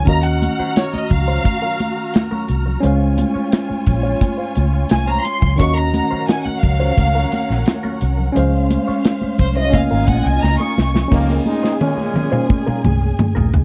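Cinematic and bittersweet, this lush 1970s-style soul passage opens with a clear, biting violin section carrying the melody until 11.1 seconds, over a distant string section with expressive portamento and a worn, lightly overdriven tine electric piano. A round, foam-muted electric bass and a dark acoustic drum kit with a tight kick sit up front, joined by a compressed wah guitar riff and soft-handed congas in the background. After a drum fill, a brilliant trombone section punches in with tape-echoed stabs at 11.1 seconds, all captured in a dry, close studio sound.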